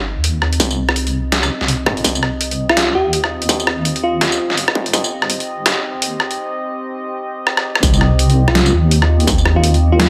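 A swung half-time groove at 166 BPM drives this tense, heavy drum and bass excerpt in C minor, where a gritty, pitched-down sampler-style kit of hi-hat, rim click, snare and tambourine sits up front beside a deep, wobbling sawtooth bass with chorus, a moody slow-attack pad pumps beneath with chorus and reverb, a distorted electronic kick falls away at 5.0 seconds before a drum fill at 7.5 seconds leads into the drop at 7.8 seconds, and a bell-like FM electric piano adds sparkling, warbling phrases with vintage 12-bit grit and delay.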